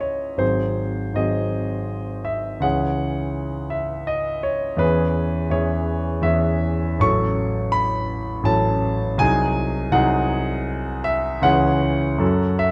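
Closely recorded with fine detail and a light reverb, a solo concert grand piano sounds clear, natural and up front, its deep bass reaching down to G#1 as the range climbs to C#6. This stormy, brooding romantic character piece moves in a rubato triple metre, its harmony turning through minor chords and dominant sevenths before closing on an F#m7 at 12.2 seconds. The 12.7-second fragment is cut from a longer work.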